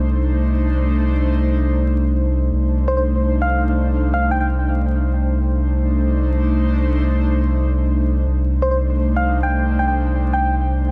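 A straight 4/4 drum and bass pulse at 167 BPM sets a dark, nostalgic mood in C dorian, where a thick, saturated sub bass holds a deep C2 beneath an airy, breathy pad that sustains a mellow Cm69 chord with chorus throughout, while a round, keys-like FM synth lead with vibrato and dub echo plays brief melodic phrases at 2.9 and 8.6 seconds, all set in light reverb over a bed of vinyl crackle in this short excerpt.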